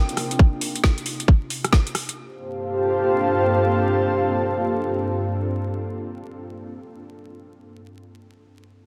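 UK garage in a skippy, late-night two-step cut, where a tight electronic kick and a garage kit with a woody snare, metallic hats and rim clicks swing up front, the kick dropping out at 1.8 s and the kit following at 2.2 s, leaving the harmony to settle on a Gm11 chord. Two pads carry the piece throughout: an ethereal, detuned sawtooth-and-triangle pad with a sub octave and ensemble chorus holds sustained chords, while a breathy, full-bodied pad with a noise layer and ring modulation adds soft texture higher up, both pumping against the sidechain. A moderate plate reverb and vinyl crackle sit under a dense, heavily limited modern master.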